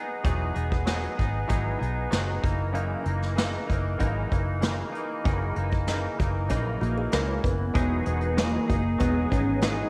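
A twangy, bright clean electric guitar opens this dreamy, laid-back indie and bedroom pop excerpt, its analog chorus adding a warbly pitch drift over Emaj9 and F#13 chords. It is joined almost at once by a soft brush drum kit with a punchy kick and a dark, foam-muted fingered bass. Near 6.8 seconds a woody kalimba plucks a brief second line with tape echo, and at 7.1 seconds a velvety, detuned synth lead takes the melody. From 7.7 seconds a reedy tonewheel organ with slow rotary speaker sits in the background, all inside a moderate echo-chamber reverb.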